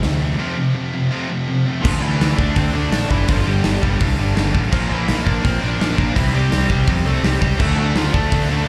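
Heard as a live club gig through the venue's PA, this raw, urgent punk rock excerpt in D minor charges along at 166 BPM. Up front, a fuzzed, picked bass and a big, punchy rock kit with a dark, medium-tuned snare drive three guitar riffs sitting in the background: a crunchy guitar with slapback echo, a very quiet bright one, and a tight, double-tracked distorted one that stops at 1.8 s and returns at 7.6 s. From 1.8 s a smooth overdriven lead guitar with delay carries the melody as the chords move from D minor through G5, B-flat and C.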